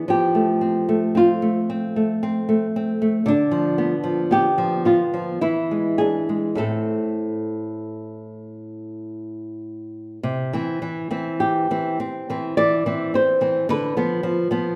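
Bathed in a moderate concert-hall reverb, this short excerpt of a yearning, solemn romantic guitar duo drifts in rubato 3/4 at 48-59 BPM: an up-front, woody flamenco guitar with old strings fingerpicks the melody over a small-sounding fingerpicked nylon-string guitar accompaniment, and the harmony settles from A minor into C major at 10.2 seconds.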